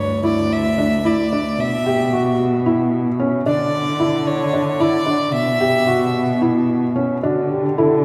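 Moving in a straight 7/8 at 223 BPM in eighths, this short, shimmering and hopeful chamber excerpt in G lydian sets a biting, nasal violin melody (0.0 to 6.4 s) over felt-muted upright piano arpeggios with audible action noise and a veiled, con sordino cello bass, while a dark French horn adds a second line from 7.2 s as the chords settle from Dsus2 and rootless G6/B onto D, all bathed in a long church reverb.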